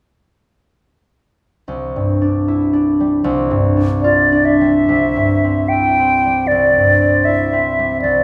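Classical impressionist duo in a luminous, dreamy rubato, where the ringing, fingerpicked concert harp opens alone at 1.7 seconds with a warm accompaniment over Cadd9 and G7sus4/C chords before the pure, straight-toned silver concert flute enters up front at 4.0 seconds with a close, tongued melody, both set in a wet scoring-stage reverb heard from further back in the room in this fragment cut from a longer piece.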